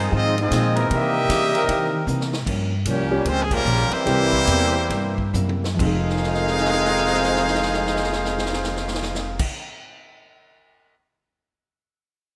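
Big band swing with a dramatic, swinging mood, this fragment of a longer piece puts a brilliant, up-front trumpet section on the melody over a dark, vintage trombone section with soft attack, a woody pizzicato upright bass and a clean hollow-body jazz guitar tucked in the background. A close-miked trombone section adds bright sustained chords from 0.7 to 2.0 seconds, and a very quiet baby grand piano joins at 3.1 seconds, while the punchy, natural drum kit plays several fills and carries on alone until 10.9 seconds. The band slows during the middle section and hits an accent, all wrapped in a lush hall reverb with the rough feel of a home demo mix.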